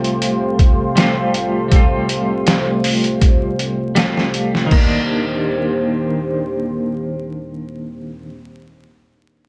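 Melancholic and smoky, this short trip hop fragment, cut from a longer piece, moves at a slow 80 BPM in 4/4 with a light 16th-note swing, set in C dorian and tuned slightly sharp to A4 = 445 Hz. A sampler-style drum kit sits up front with a thumpy kick, medium-tuned snare, hi-hat and crash, its pitched-down, compressed sound roughened by vintage 12-bit grit and tape-warm from being re-recorded in a small room; the drums play until 4.9 seconds. A bright, twangy twelve-string electric guitar supplies clean picked accompaniment between Eb3 and F4, treated with tremolo, tape echo and the same sampler grit. Alongside it, a deep, moody analog pad of detuned sawtooth and triangle waves with a sub octave holds slow-attack chords from C3 to C5, thickened by chorus and also prominent in the mix. The harmony shifts from Fadd9/C to Cm7 at 4.7 seconds, while light reverb, digital ambience and a layer of vinyl crackle wrap the whole in a dusty haze.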